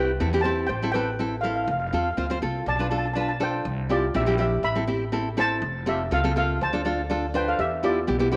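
Intense and dramatic, this short calypso passage in straight 4/4 runs for 8.4 seconds, cut from a longer piece. A metallic, shimmering steel pan carries the melody up front, struck with medium rubber sticks for an airy lead tone. Beneath it, a full-bodied nylon-string guitar is fingerpicked with a dark, deep classical character, and small finger squeaks can be heard along the strings. A woody upright bass with gut strings is played pizzicato, giving a thumpy acoustic low end that also sits close to the listener. The harmony moves from C through Am7, F and Bm7b5, then cycles back and closes on Dm7 and Em7. All three parts play throughout under a moderate plate reverb that lends the trio a lingering, spacious tail.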